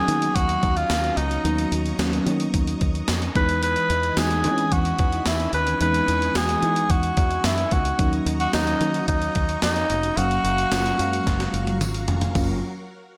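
Romantic and nostalgic, this short cut from a longer 1980s-style pop piece puts a raspy, gritty tenor saxophone up front carrying the melody with a touch of delay, over a mellow, round FM electric piano with chorus and a fingered electric bass that sounds punchy and foam-muted. Shimmering sawtooth string-machine violins sit in the background with ensemble chorus, while a thumpy, tape-tinged drum machine with gated reverb on the snare drives the groove and a jingly, distant tambourine joins at 0.9 seconds. The chords move from Bmaj7/D# through Emaj7 and D#m7 to F#maj7, and a drum fill arrives at 11.3 seconds, all in a moderate digital room reverb.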